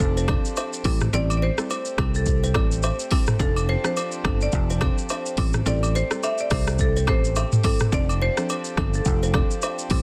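Romantic and breezy, this afrobeats excerpt rides a gently swung 4/4 groove that rocks between F6 and Am7 chords. An electronic afro-pop drum kit sits up front, with a deep kick, smooth hi-hats, rim clicks, shaker and toms, and a touch of soft clipping on the snare. Beside it, a growly, punchy fingered electric bass holds the low end. A marimba played with medium hard mallets carries the melody in a dark, smooth rosewood tone with digital delay, while a reedy, breathing pedal harmonium sustains mellow chords with sidechain pumping. A hollow, airy kalimba riff enters at 0.2 seconds with its own delay. Just after, a round, bright FM synth pluck with chorus joins in the background alongside a layer of compressed, saturated agogo bells and woodblock, all set in a small room and finished with a dense, heavily limited modern master.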